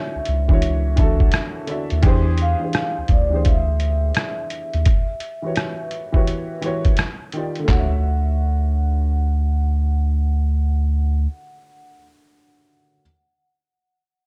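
A dreamy, mellow lo-fi hip hop excerpt in D major at 85 BPM opens with a soft-mallet vibraphone melody, metallic and ringing with slow motor vibrato and tape echo. Beneath it, a worn, woody, slightly detuned upright piano carries cassette-tape character and plate reverb, with both instruments set back behind a round, deep analog bass and a thumpy, muffled, pitched-down sampler kit of kick, hi-hat, rim click, handclaps and toms, gritty and up front, swung on the 16ths over chords moving from Dmaj9 through E7alt and Em69 to Ebmaj9. The drums stop at 7.9 seconds and the vibraphone at 12.0, leaving the piano to sound alone until 13.0 seconds.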